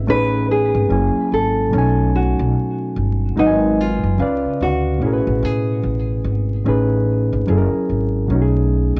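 Lo-fi hip hop with a nostalgic, hazy mood and a swung sixteenth-note feel, built on extended chords. A bright, fingerpicked nylon-string guitar carries the melody through low-pass filtering and plate reverb until 6.6 seconds, over a reedy, clean electric piano accompaniment heard through its built-in speakers and a dark, woody pizzicato upright bass with transformer saturation, all placed up front. The whole fragment sits in a small room ambience and is coloured by worn cassette tape, vinyl crackle and warbly pitch drift.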